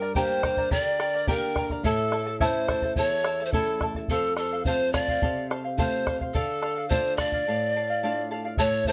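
A light reverb surrounds this short, wistful passage of Andean folk, cut from a longer piece, with the pan flute placed close and up front. The bamboo pan flute carries the melancholic melody in a breathy, reedy voice, its tongued notes marked by a chiff and a gentle vibrato. Beneath it the charango's double strings, some doubled at the octave, are fingerpicked into a shimmering accompaniment, while a flamenco guitar adds a lower, fingerpicked layer. A round, dry bombo enters at 0.2 seconds to mark the steady two-beat straight feel. The harmony moves from G minor through A and F before settling on D minor around 6.3 seconds.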